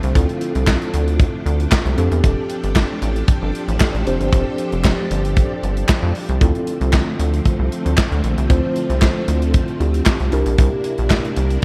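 A dreamy, reverb-soaked hall sound frames this smooth, danceable early-eighties boogie funk excerpt, where a punchy, up-front studio drum kit and a rubbery, bouncy square-wave bass drive the groove beneath a mellow tine electric piano and shimmering, chorused string-machine violins, while a very quiet, crisp group handclap joins at 0.7 seconds over chords moving from Dm7 to F69 and back before closing on C9.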